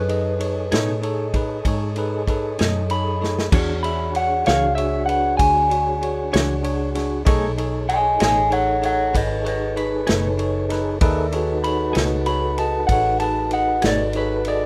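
A slightly broken-up, lo-fi electric guitar through a small old amp plays a second line in this laid-back, swaggering slow blues excerpt in 12/8, while a compressed clean electric guitar with tremolo adds picked accompaniment over B13 and E13 chords. A mellow, flute-like tonewheel organ with key click and slow rotary speaker sustains chords beside a bell-like tine electric piano, and a dark, round, foam-muted fingered bass anchors the low end. A punchy soul drum kit with dark cymbals and a rolled-off top sits up front, playing a short fill at 3.2 seconds, all in a dry, rough home-demo mix.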